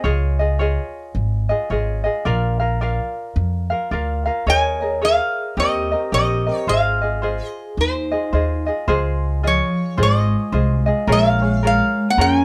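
Relaxed and dreamy, this Hawaiian piece moves with a gentle swing in four and is cut from a longer performance. A fingerpicked ukulele, light and up front, and a woody, thumpy pizzicato upright bass on steel strings carry the accompaniment from the start. At 4.5 seconds a metal-body resonator slide guitar takes the melody, bright and nasal with a metallic, fingerpicked edge, sitting close to the listener. Alongside it, a vibraphone struck with medium hard mallets adds a dark, smooth second line that rings with medium motor vibrato. The harmony drifts through colorful chords such as Dbadd9, Eb7sus4 and Ab6, then moves into a new section at 8.9 seconds built on Dbmaj9 and Bbm7. Light reverb gives the mix a soft sense of space.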